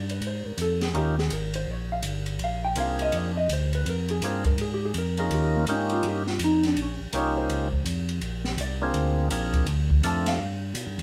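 A greasy, soulful soul jazz organ trio swings in this short cut from a longer piece, with the band playing live together in one room under a moderate studio reverb. The tonewheel organ carries the bass line with a fat, clean tone, key click and a stationary speaker, sitting up front in the mix. A second, percussive tonewheel organ enters at 0.9 seconds with the melody, its full sound marked by second harmonic percussion, key click and a slow rotary speaker. The vintage hollow-body jazz guitar is featured throughout, its electric tone dark, clean and picked, while it also fills in the accompaniment. An acoustic, open jazz drum kit drives the swing on hi-hat, ride cymbal, a high-tuned snare and a boomy kick. The harmony moves mostly between Bb9 and Eb9 dominant sounds before turning through Dm7 to Fsus2 near the close.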